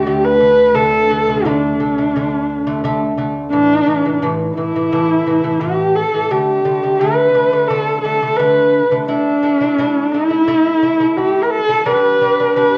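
A rich, husky horsehead fiddle carries the melody up front in this proud, galloping Mongolian folk excerpt at 87 BPM in D zhi mode, its bowed line full of vibrato and portamento over delicate fingerpicked arpeggios from a double-strung gut lute, while a biting, nasal cello holds a low D drone only until 3.6 seconds, all set in a lush hall reverb on a home cassette recording.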